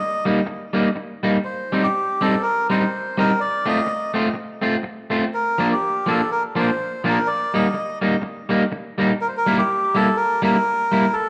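A dark, warm production with a moderate echo-chamber reverb frames this short cut from a longer ska piece, which moves at 124 BPM in 4/4 with a light swing on the eighth notes. The mood is joyful and upbeat. A reedy, breathy melodica carries the melody from the first moment, its nasal, smooth tone trailed by tape echo and sitting up front in the mix. An electric guitar at the edge of break-up joins at 0.3 seconds as accompaniment, its picked, twangy sound slightly broken up and also placed up front. The harmony moves through Eb, Cm, F and Bb before returning to Eb and settling on Gm6 near the end, with both parts playing through to about 11 seconds.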